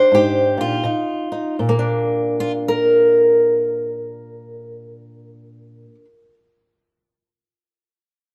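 Swaggering and laid-back, this brief acoustic country blues fragment in Bb mixolydian features a lone fingerpicked, ladder-braced acoustic guitar with a dark, woody, boxy tone from old strings, placed up front in moderate studio reverb at a swung 76-89 BPM in 4/4; it opens with a stop and slows down through the first 1.6 seconds, moving from Bb9 to B before settling on Bb.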